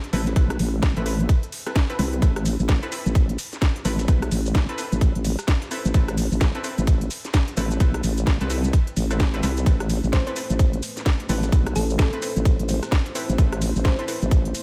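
Bass house at 129 BPM in A minor, with a swung 16th-note feel and an aggressive, gritty mood, cut from a longer piece that sits on an A minor add nine chord throughout. An up-front, tight electronic kick leads the low end, layered with a garage kit of cracking snare, crisp hats, rim click and shaker, plus a very quiet, sampler-style breakbeat kit adding gritty snare, hi-hat and ride cymbal, both kits carrying a tape-warm character. The centrepiece is a nasal, resonant vowel-sweep wobble bass, saturated and compressed with chorus and sidechain pumping, sitting prominently between A1 and C2. Above it, a bold, punchy orchestra-hit-like synth stab built from detuned sawtooth layers with ring modulation and a filter sweep punctuates the groove, carrying its own reverb, digital delay and sidechain pumping. Around 10.1 seconds a round, tine-like thumb-piano pluck enters with a mellow melody, and at 10.3 seconds a moody, dark analog pad slips in behind it with slow-attack sustained chords, both softened by chorus. 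The overall mix is dry, with little reverb.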